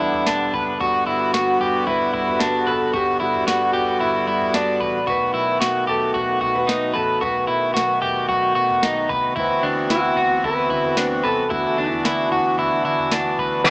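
Hazy, haunting dream pop at 112 BPM in straight 4/4, cut from a longer piece, where a reedy, slow-beating accordion holds sustained chords and an up-front, slightly broken-up, scooped electric guitar plays arpeggios through subtle chorus and tape echo, over a round, foam-muted bass in the background and a soft analog rhythm box with a deep kick and tonal snare, while a clean lap steel carries the slide melody with tape echo from 1.4 s to 12.8 s above a progression of Em7, Gmaj7, B7 and D13, before a bright, overdriven guitar with tremolo and analog chorus enters at 13.6 s, in a dry, gritty small-speaker recording with light reverb.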